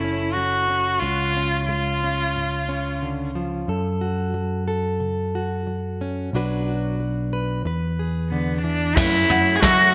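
A straight 4/4 pulse at 90 BPM carries this stirring, bittersweet indie folk fragment in F# minor, cut from a longer piece, with a building arrangement that moves through F#m, C#, Bm and E before landing on F#m7. It opens with a fingerpicked, plugged-in jumbo steel-string acoustic guitar, full-bodied and up front, beneath an intimate solo cello played sul tasto with an airy bow, soft attack and light vibrato, which sings the melody until 3.0 seconds and returns near the close. A picked, amped electric bass sits forward through the whole passage. At 9.0 seconds the texture blooms: a vintage brush kit with dark cymbals, a punchy kick and gated reverb enters alongside a grainy egg shaker, a mellow, boxy upright piano tracing arpeggios with audible action noise, a shimmering octave-doubled twelve-string on old strings, a brilliant but worn grand piano, and a smooth-topped, classical-style brass section holding sustained chords very quietly. 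A crisp, saturated group handclap adds a faint touch at 9.6 seconds. The sound is a bright 1980s-style digital production bathed in a lush hall reverb.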